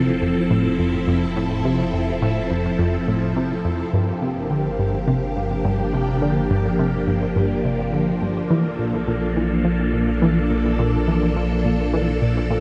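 A swirling, vintage string machine sits up front, holding bright sustained chords through an ensemble chorus and phaser that give it a shimmering, slow-blooming character. Beneath it, a tight sequenced synth drives a riff with a plucky, detuned sawtooth edge softened to a mellow tone, treated with chorus, phaser and delay. A round, deep analog bass fades in across the full 12.6 seconds, its evolving low end adding a gentle pull under the texture. This is a mysterious, cosmic piece of sequencer-driven space music at 105 BPM in a straight 4/4, set in G dorian and moving from Fmaj7 to Gm7 at 3.9 seconds and Bbmaj7 at 8.5 seconds. The sound is wet and immense, washed in an ambient reverb with an 8.1-second decay, and this section is cut from a longer piece.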